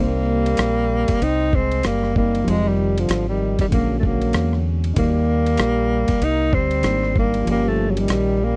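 A lazy swing on the sixteenths drives this cool, nocturnal jazz-hop fragment, cut from a longer piece. A gritty, compressed sampler-style drum kit arrives at 0.5 s and stays up front until 8.3 s, with a thumpy kick, hi-hat, ride cymbal and rim click. Beneath it, a round, punchy fingered electric bass with a deep dub tone sits just as close. A dark concert grand piano stays in the background, mellow and vintage with long sustain, moving through Cm7, Fm9, Bb7alt, Ebmaj7 and Gm7b5. The tenor saxophone carries the melody in an intimate, whispered subtone with vibrato and a soft attack, while a breathy trombone plays a second line further back, with scooped notes and light vibrato. The dry, close sound recalls a 1970s studio, with little reverb.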